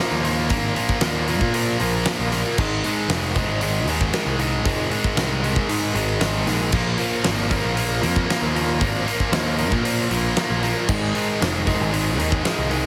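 Angsty and dark, this short cut from a longer quiet-loud alternative rock piece moves in a straight, steady 4/4. A double-tracked, overdriven electric guitar sits up front with a bright, picked riff, while a growling picked electric bass, direct and amped with its own overdrive, fills in the low end. A huge arena drum kit booms from a big room, with a fat snare, a punchy kick, hi-hat and crash cymbal driving the part. At 6.7 seconds a very quiet tonewheel organ joins with full, shouting sustained chords, lightly overdriven, with chorus vibrato, key click and a slow rotary speaker. The harmony shifts between Bb5, Ab and Bbmadd9. A light reverb and a heavily compressed, radio-like sound give the whole mix a dense, squeezed character.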